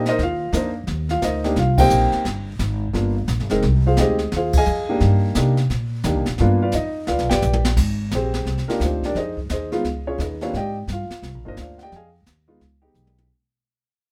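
The recording sits in a light reverb, with the piano and upright bass placed up front and the brushed drums captured in an acoustic studio room. It is a smoky, moody jazz piano trio in a swinging 4/4, cut from a longer performance. A warm, natural-sounding baby grand carries the melody through its middle register, while a woody, steel-strung upright bass is plucked underneath. A brush kit with dark cymbals, a medium-tuned snare and a boomy kick fills out the groove. The trio hits accents together at 1.7 and 4.5 seconds, and the drums play short fills near the change of section and again at the close. From 7.8 seconds the harmony moves through major-ninth and eleventh colours as the music fades out to the end.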